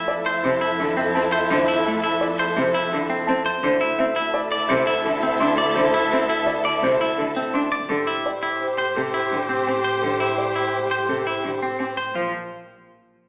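A brisk 169 BPM pulse in 6/4 with a straight feel drives this bright, propulsive stretch of minimalist classical pattern music, cut from a longer piece. Up front, a twangy, compressed clean electric guitar spins picked arpeggios, while a dark grand piano with long sustain carries the melody from 0.1 seconds onward. A focused solo cello with vibrato enters at 0.4 seconds as bowed accompaniment, and a lush symphonic violin section holds expressive sustained chords from further back in the hall. A close-miked soprano saxophone with a mellow classical tone traces a quiet second line in the background, and a bowed chamber double bass section supplies a clear, remote bass foundation. The harmony moves from Fmaj7 through Dsus2 and Am7 before landing on Bb5 at 12.2 seconds, all set in a moderate recital hall reverb and colored by an AM radio sound.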